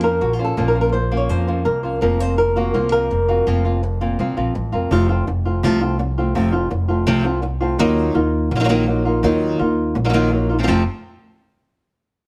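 A dark, thumb-plucked flamenco guitar carries the melody up front in this mournful, dramatic flamenco excerpt, alongside a second fingerpicked flamenco guitar whose stabs, with audible finger squeak, drop out at 4.9 seconds, while a woody, growly pizzicato upright bass anchors the low end until 10.8 seconds, all set in light reverb.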